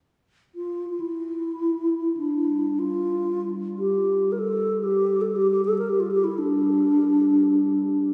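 A mellow, hollow bass flute carries the melody up front, its airy, tongued tone shaded with vibrato and a tape echo, entering at 0.6 seconds in this short, free-time world meditation fragment cut from a longer piece. From 2.5 seconds a glass harmonica adds a pure, ethereal texture on a single G3, its slow attack giving a smooth, glassy glow beneath the flute. A huge ambient reverb with a 6.8-second tail wraps the whole fragment in a spacious, meditative calm.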